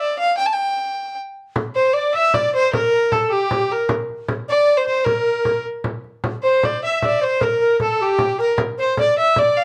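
A single bowed fiddle leads this medieval dance with a nasal, gut-string tone and a smooth top, sitting up front as it carries the melody alone for the first 1.6 seconds. A small frame drum then enters, played with soft hands and sounding bright and acoustic in a small room, and just after, at 1.8 seconds, a tenor recorder joins with a second line, its airy wooden voice marked by tongued chiff and lifted highs. Set in G dorian at 102 BPM counted in dotted quarters, the 6/8 lilt feels straight, driving and mysterious. The fiddle ranges from G4 to A5 while the recorder stays within a narrower span, from G4 to E5, and both parts share a reedy edge. Light reverb and a dark, warm production frame this fragment, which is cut from a longer piece.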